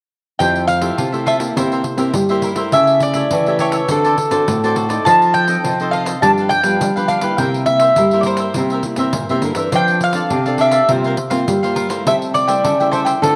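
Samba and choro in F major at 103 BPM, this sunny, lively cut from a longer piece features a round, double-strung mandolin carrying the melody up front with a slapback echo, over crisp picked cavaquinho and a dark, fresh-stringed fingerpicked nylon-string guitar. A second nylon-string guitar, thumb-plucked with audible finger squeak, supplies the bass line, while a jingly pandeiro played with hard hands sits close and dry. All five parts play together from 0.4 to 13.4 seconds through a moderate plate reverb, moving through chords such as Fmaj9, A7/C#, D7, G7, F6 and C7sus4 before closing on Am7/C.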